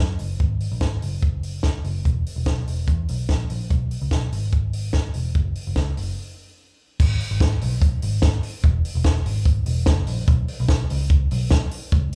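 A straight 4/4 pulse at 146 BPM drives this restless, bittersweet slice of jangly indie pop in G# minor, carried by a compact cocktail drum kit whose tight kick, high-tuned snare, hi-hat and dark crash cymbals sit dry and up front. A vintage muted electric bass, picked and amped with a round, foam-muted tone, holds the low end between E1 and F#2. After a break at 6.2 seconds, the second section begins at 7.0 seconds and runs until the cut at 12.2 seconds, with the pair heard throughout as if through a club's PA at a live gig.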